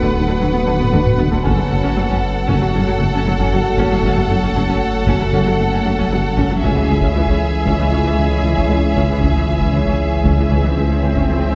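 Heard from deep in a wet scoring-stage reverb with a softened, dulled top, this fragment of a hybrid orchestral and electronic film score feels relentless and vast, driving at 116 BPM in a straight 5/4 and tuned slightly sharp to A4 = 445 Hz. A lush symphonic violin section carries the melody with vibrato and a smooth, focused tone, joined beneath by a clear studio violin section on a second line, while a close viola section bows accompaniment in the background. A hollow, flute-like pad with chorus and a mellow, vintage French horn section hold sustained chords over the progression from Bm/D to F#m at 1.5 seconds and C#m at 6.6 seconds. The low end is thick: a saturated sine sub bass sits most forward, reinforced by a very quiet expressive cello section, a woody double bass section and a mellow tuba. A close taiko ensemble struck with heavy sticks enters with a drum fill at 0.8 seconds, and a dark, worn grand piano adds faint intimate texture, its action noise audible. 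An electronic swell plays in the background from 10.1 seconds to the end of the cut.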